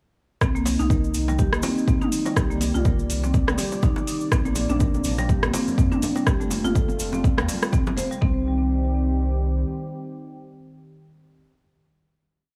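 Warm and driving, this short afro house piece in C dorian moves at 123 BPM with a swung sixteenth feel, its overdriven four-on-the-floor kick up front beside metallic programmed hats, rim and tom, low-tuned bongos, grainy cabasa sixteenths and very quiet congas entering at 4.5 s, while a round sine sub bass in a dotted rhythm and a woody marimba step sequence through tape echo pump together with a smooth, warbling detuned analog pad that sustains over Cm, Bbadd9 and Fadd9 before holding a final C minor chord alone from 9.6 s to 11.4 s in a dry, small room.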